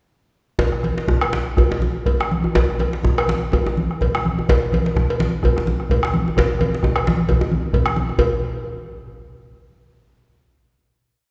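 Powerful and festive, this short West African traditional drum ensemble piece swings its sixteenths at 121-141 BPM in 4/4 and speeds up throughout, with a deep, dark, saturated bombo up front, medium-tuned djembe, thick-skinned congas played with soft hands, and a metallic cowbell carrying a bell pattern, all playing from 0.6 to 8.4 seconds before a final hit at 8.2 seconds rings into a wet concert hall reverb.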